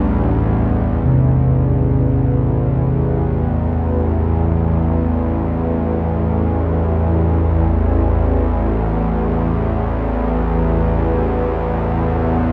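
Dark ambient drone music with a cavernous, dark mood, heard as a short cut from a longer piece. A bowed-like drone sits up front from the start to 12.5 seconds, its string-like, tense, bright tone thickened by detuned unison layers, a breath of noise, vibrato and its own built-in reverb. Alongside it, a very quiet, deep ambient pad holds moody sustained chords with a sub-octave underlay and chorus, ending at 1.1 seconds as the harmony moves from Gsus2/A to Am. Gamelan-type bossed gongs play soft arpeggios in the background until 6.8 seconds, their bronze, round, beating tones struck with padded beaters and trailed by a diffuse ambient delay. The whole recording is steeped in a long cathedral reverb, placing the parts in a vast, echoing space.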